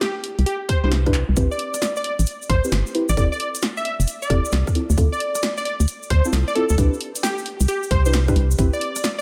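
UK garage in a bouncy, skippy two-step groove at 133 BPM with swung 16ths, this short excerpt sets a plucky, detuned unison lead carrying a catchy melody and a punchy, overdriven analog drum machine of handclaps, hi-hat, rim click and snare from the start, then adds an up-front, hollow organ-like FM bass pumping against a tight, layered electronic kick, deep mellow chord stabs with chorus and tape echo moving through Cmaj7, Am9, Fmaj9 and Dm7, and a grainy cabasa entering at 1.4 seconds, after a drum fill at 1.1 seconds, all within a dreamy, reverb-soaked mix.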